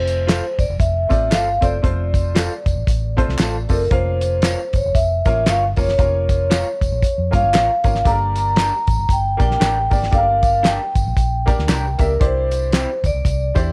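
Swung eighths at 116 BPM in 4/4 drive this joyful, danceable 1960s-style soul piece in F major, where a soft-mallet vibraphone with slow motor vibrato rings out the melody up front over a clear, worn grand piano, a round, foam-muted fingered electric bass, a cloth-damped, thuddy drum kit with a fat snare and tight kick, tambourine and handclaps, and slightly broken-up, lo-fi guitar stabs through a small old amp, set in a small room.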